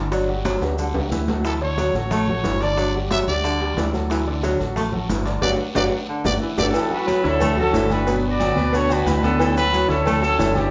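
A growling, raspy trumpet carries the melody up front from 1.5 to 6.7 s before a punchy horn section takes over at 6.6 s, in this joyful, sunny salsa excerpt cut from a longer piece at 181 BPM in D major. Beneath them, a clear grand piano with audible action noise plays accompaniment, a round, dark fingered electric bass holds the low end, and a breathy, whispered baritone saxophone with scooped notes plays a second line. Congas, distant ringing timbales and agogo bells, a raspy guiro, grainy maracas, and very quiet, tight bongos and cowbell fill out the percussion, with drum fills, a band accent and a live-room sound with large studio reverb.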